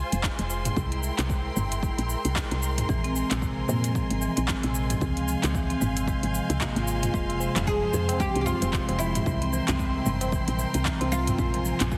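Organic downtempo at 113 BPM in 4/4, with a 16th-note swing, this earthy, mystical passage in F harmonic minor is cut from a longer piece and moves through Fm, C7, Bbsus2 and Dbmaj7 before returning to Fm and closing on Bb7sus2. A clear, focused studio string section holds bowed chords with vibrato, while a soft, round FM bass with a dark, woody tone sits underneath; both parts pump against the sidechain. In the background, a calm, glassy texture of drifting sine overtones is softened by chorus and its own reverb. Overdriven deep house drums, with metallic hats, handclaps, shaker and toms, join a deep, layered electronic kick, both re-recorded in a large room. A marimba with medium mallets enters at 2.9 seconds with delayed arpeggios, a low-tuned tabla with a short ring arrives at 7.4 seconds, and soon after a mellow, fretless oud with double strings plays a deep, plectrum-plucked melody through digital delay. 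An echo chamber reverb surrounds the mix, and heavy multiband compression gives it a squeezed, radio-like sound.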